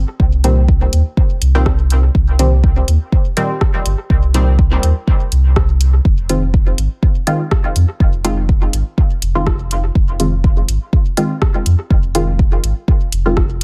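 A round, sine-toned sub bass opens this cavernous, nocturnal dub techno cut in F minor at 123 BPM, pumping against an up-front electronic kick that arrives at 0.2 seconds. From 0.4 seconds a muted, detuned sawtooth chord stab with a short filter pluck drifts through chorus, phaser and dub echo over Cm7 and then Fm7 from 6.1 seconds, while a deep house kit adds dark hi-hats and rim clicks that also trail off into echo. The lightly swung 16ths sit in a digital ambience, with the bass and kick holding the front of an echo-heavy mix.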